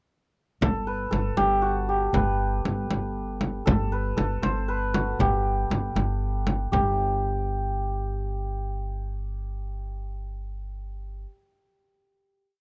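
In a straight 6/8 at 79 BPM counted in dotted quarters, this stately, festive Persian modal piece in G dastgah mahur, tuned to A4 = 441 Hz, sets an up-front, shimmering hammered santur playing an ornamented modal melody between F#4 and C5 over a woody pizzicato upright bass holding a simple root-and-fifth line on G1, while a deep, large frame drum beats a low-and-high stroke pattern with hard hands from 0.6 s until 7.0 s, shortly after the ensemble settles at 6.7 s onto a final note, all captured in a dry, close 1970s-style studio sound.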